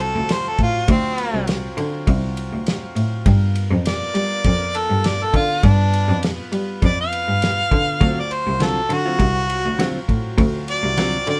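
The recording has the light reverb of a band playing live in one room, and this short cut from a longer piece is a swaggering, rollicking soul blues at 101 BPM with a straight-eighth feel and a slight swing on the sixteenths. A clear, overdriven harmonica solos up front throughout, jazz-styled, with vibrato, tongue slaps and scooped notes over a D7#9 to G7#9 progression. A single bowed cello carries the bass line, bright and biting, with an intense vibrato that sounds distant yet sits forward in the balance. An acoustic soul drum kit comes in at 0.3 seconds with a dry, dark tone: a punchy kick, a medium-tuned snare and ride cymbal, its top end rolled off. Behind them, a warm horn section holds loose, pop-style sustained chords in octave doubling with light vibrato. At 8.0 seconds a clean, compressed electric guitar, recorded direct, adds picked stabs until 11.2 seconds.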